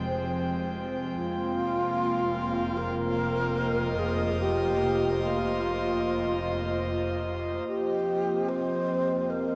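The recording is bathed in a huge, wet reverb and carries the worn, warbly pitch drift of old cassette tape, lending this serene, melancholic ambient fragment a hazy, aged quality. It floats in free time in F minor, resting on an Fm9 chord until it shifts to F7sus2 at 7.7 seconds. An up-front alto flute with a wooden head carries the melody between F4 and C5, its mellow, breathy tone marked by a crisp attack, unsteady vibrato and a tape echo that lends it a distant air. Alongside it, a bright, airy synth pad sustains soft chords from F3 to G5, its slow attack and long release thickened by chorus and a noise layer. At 7.7 seconds a filter sweep moves across this pad for the closing stretch. Underneath, a bowed double bass section holds a low F1, smooth and rich with vibrato, sitting quietly in the mix throughout this passage cut from a longer piece.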